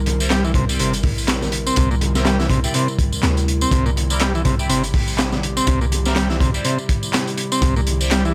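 A swung breakbeat groove at 123 BPM in 4/4 drives this gritty, raw fragment, built on a crunchy, saturated drum kit with a punchy kick and high-tuned snare sitting up front, joined by analog tambourine and handclaps and faint, distant congas. A deep, boomy 808-style bass and a buzzy vintage combo organ riff with tube saturation and delay fill the lower register over a C7 chord, while a nasal, band-passed sawtooth stab with phaser, lush chorus and delay flickers in the background. Underneath, a warbling lo-fi pad holds nostalgic sustained chords, colored by chorus, reverb and sidechain pumping.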